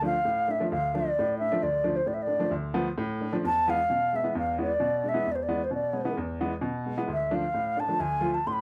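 Set in a small, moderately reverberant room, this short excerpt from a longer festive, soulful klezmer piece places a hollow, mellow silver concert flute up front, close-miked, singing the melody with vibrato and tongued notes between C5 and C6. A clear, woody upright piano accompanies it throughout, ranging from D2 to F4 at a straight 132 BPM in 4/4, in D dorian sharp4. The harmony moves from Dm to E at 3.4 seconds and returns to Dm at 7.1 seconds.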